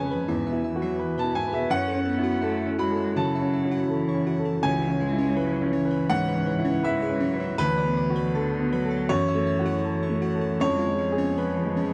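A clear, open baby grand piano sits up front from the first second, alongside a distant bowed cello singing an expressive second line with vibrato and portamento, a warbling, lo-fi tape-like pad holding dark sustained chords very quietly beneath, and a round, tine-like thumb-piano-like synth pluck tracing arpeggios through chorus and slapback echo. This melancholic, fragile neoclassical passage in F# minor moves at about 81 BPM in 4/4 with uneven, rubato beats, drifting from Eadd9 through F#m7 and C#m7 to Bm7/D, back to F#m7, and arriving on C#7/E# at 10.6 seconds. The sound is a dry, close 1970s-style studio recording with light reverb, cut from a longer piece.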